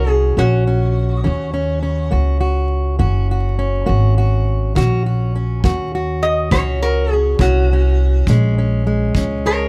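A slow, straight 12/8 sway at 68 BPM carries this brief, mournful, soulful acoustic country blues excerpt, where a metallic, nasal lap resonator guitar sings the slide melody up front over a boxy, fingerpicked parlour steel-string guitar and a woody, dark pizzicato upright bass, with a punchy brushed kick drum joining at 4.8 seconds, all captured close and dry with vinyl crackle as the harmony moves from Ebm7 to Bbm7 at 8.3 seconds.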